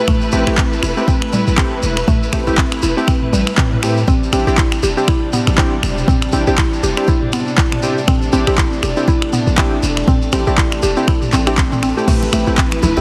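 Afro house at 120 BPM with a 16th-note swing, this driving, hypnotic excerpt moves from Am7 to Cadd9 as a dark, lush bowed string section sustains chords behind a woody FM mallet pluck spinning arpeggios and detuned pulse-and-sawtooth analog keys stabbing with chorus and tape echo, these three and a boomy sine 808 bass all sidechain-pumping alongside an up-front deep electronic kick, while an afro-pop kit adds snaps, handclaps, toms and crash, a grainy shekere shimmers in the distance, congas slip in at 12.2 seconds and a hard-hit djembe lands at 12.8 seconds, under a heavily compressed radio-style sheen.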